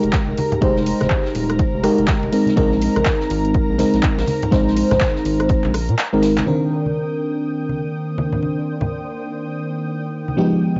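Heard through a dark, lo-fi cassette haze in a moderate studio room, this hypnotic deep house excerpt in C minor moves at 123 BPM with a swung sixteenth feel, opening on Fm11 and Bb9sus4 chords. A mellow, full-bodied FM electric piano plays up-front stabs with chorus, delay and pumping. Beneath it sit a round, deep analog bass, an overdriven, punchy electronic kick, dry drum-machine handclaps, hats and rim clicks, and soft-handed congas, with a faint, airy big-band kit of ride and snare far in the background. A bright, detuned analog string pad shimmers on top throughout; the kick drops out at 6.0 s for a drum fill, the bass and drums then fall away as the harmony settles on Cm9, and at 7.9 s a silky, vintage string machine enters with slow-attack sustained chords.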